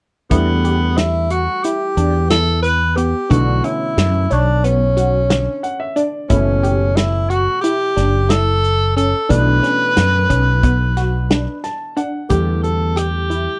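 Intricate and brooding, this short cut from a longer progressive instrumental moves in a straight 9/8 at 180 BPM in eighths, set in B minor. A warm tenor saxophone carries the melody up front with light vibrato and a roomy, distant tone, while a baby grand piano with short sustain supplies the accompaniment and drops in fills at 5.3 and 11.3 seconds. A glassy, crystalline wavetable pluck spins chorused arpeggios, and a dark, round fretless electric bass, treated with ensemble chorus, sits prominently underneath. A vintage drum kit with a punchy kick, medium-tuned snare, rim clicks and hi-hat keeps time in a small, natural room sound with a rolled-off top. The harmony cycles through Emadd9, Bmadd9 and F#m7 before settling on Em at 12.3 seconds, where a grainy, very quiet tube shaker briefly joins in the dry, close 1970s-style studio recording.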